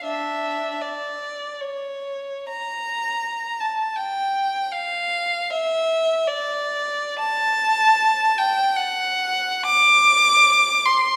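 Mournful and lonely, this short classical passage for unaccompanied violin moves in free time in D minor, expressive across its 11.2 seconds, cut from a longer piece. A single bowed violin carries everything from D4 to D6 with a rich, vibrato-laden tone, smooth and even, its upper notes staying sleek rather than sharp. The instrument sits up front, yet a wet recital hall reverb, heard from further back in the room, wraps it in a lingering, spacious glow.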